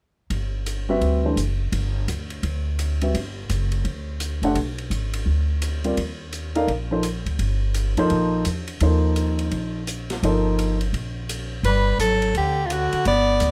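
Modal jazz at 169 BPM in 4/4 with a swung eighth-note feel, this short cut from a longer piece sounds open and hypnotic. An upright bass, plucked on gut strings, gives a woody, thumpy low end up front, while a small-room acoustic drum kit keeps time on hi-hat, ride cymbal and a medium-tuned snare with a dark, smooth tone. An upright piano joins at 0.9 seconds with a warm accompaniment that carries the harmony from Gmaj7 to Ebadd9 before it stops at 10.8 seconds. A new section opens back on Gmaj7 at 11.6 seconds, and at 11.7 seconds a close-miked soprano saxophone takes the lead with clear, vibrato-rich lines touched by plate reverb, while a bass clarinet adds a second line beneath it with scooped notes and a present, jazz-style voice. Light reverb gives the whole recording a sense of space.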